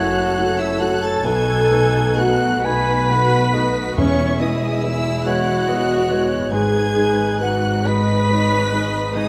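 Bathed in a wet scoring-stage reverb, this short cinematic fragment in a rubato 6/8 at around 42-48 BPM carries a hopeful, uplifting mood, as a high, expressive violin section sings the melody over second lines from a mellow, distant clarinet, a pure, hollow flute and a focused lower violin section, while a felt-muted upright piano with audible action noise, smooth violas, dark French horn chords, rich cellos and soft-attack double basses fill out the harmony from F#m7 to G#m, and close, dry timpani strike between 4.0 and 5.2 seconds.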